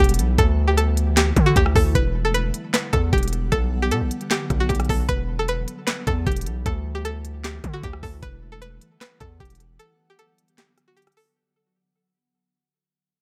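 Dark, eerie trap in E minor at 153 BPM with a half-time feel, built around a twangy, string-like resonator pluck that carries the melody with a chorus effect, over an ethereal, airy pad of sustained chords treated with ensemble chorus, reverb and phaser in the background. Up front sit a heavy, aggressive distorted 808-style bass and an electronic trap kit with a knocking kick, sharp snare, crisp hats, handclaps and rim clicks, while the chords move from Dsus2 through Emadd9 to Bm. This excerpt from a longer piece fades out throughout, and the bass drops away at 9.8 seconds for a closing break in a dark digital ambience.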